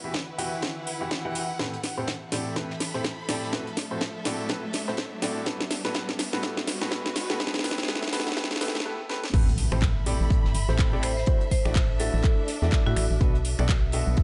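Soulful and bittersweet, this piano house clip opens with a woody upright piano riff trailing dub echo over lush, bowed strings pumping in the background, a punchy layered electronic kick, a house kit with cracking snare, metallic hats, snaps, claps and crash, a very quiet acoustic studio kit, and a background riser that builds through a drum fill. A brief break follows before the drop at 9.3 seconds brings an electronic impact and a hollow, dark, organ-like FM bass, with a bright hard-mallet marimba entering at 11.0 seconds.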